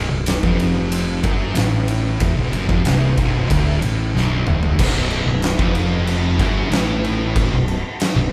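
Two thick fuzz guitars, one warm and one dark, open this sludgy, heavy stoner and doom metal excerpt with a Bm riff in straight 4/4, sitting in the background over a growly fingered bass that is overdriven and tube-saturated. An oversized, low-tuned acoustic kit joins at 0.3 s, up front and gritty, with a boomy kick, fat snare, toms, crash and ride in a pumping big room. A drum fill at 4.1 s leads into a B5 passage where a bright, double-tracked high-gain guitar enters at 4.8 s, all played live in one room with moderate large-studio reverb.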